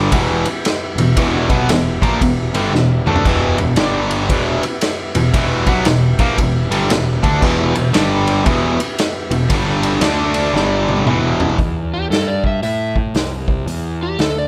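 A swung 4/4 groove at 115 BPM drives this smoky, heavy blues rock and southern rock power-trio cut in E minor, taken from a longer piece. A vintage acoustic drum kit sits up front with a punchy kick, a medium-tuned snare, dark cymbals and a rolled-off top in a small, pumping room, and it breaks into drum fills along the way. Alongside it, a fuzz-drenched picked electric bass sounds round and overdriven, while a biting, bright, double-tracked overdriven guitar picks out the main riff over chords that shift mostly between Em and G5, with a brief turn to D5. A very quiet tonewheel organ holds fat, lightly overdriven sustained chords through a fast rotary speaker until both it and the riff guitar stop at 11.6 seconds. From 11.9 seconds, a dark, overdriven slide guitar takes the melody with slapback echo as the harmony moves to Am and then C, all set in a moderate large studio reverb.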